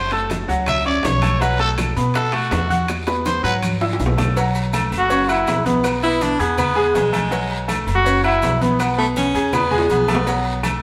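A growling, gritty trumpet leads this sunny, festive salsa cut from a longer piece, taking an up-front solo with light vibrato that runs until 3.5 seconds at a brisk 163 BPM in straight 4/4. Beneath it, a brilliant, polished grand piano with short sustain carries the accompaniment throughout, while a dark, thumpy upright bass with gut strings plays pizzicato underneath. A punchy trombone with a smooth top picks up the melody at 5.0 seconds, and a breathy, edgy baritone saxophone adds a second line from 6.0 seconds. In the background, a full percussion section of congas with thick skins struck by hard hands, tight high-tuned bongos and cowbell, ringing metal-shelled timbales and agogo bells, raspy guiro, grainy maracas and woody claves drives the groove, with drum fills arriving at 2.9 and 9.5 seconds. The band plays live together in one room, bathed in a stone-room reverb, as the harmony moves among F#m, B5, Eadd9, F#5 and E.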